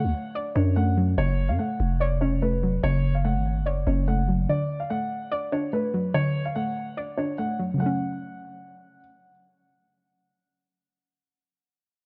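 Drill hip hop with a cold, dark half-time feel, cut from a longer piece and set in a small room. A mellow, boxy concert grand piano carries the melody through a low-pass filter and digital delay until 9.0 s, over a soft, round pluck with chorus that holds the accompaniment until 11.5 s. A growling, buzzy 808-style bass sits up front beneath them until 4.5 s, while the chords move between D and F# minor.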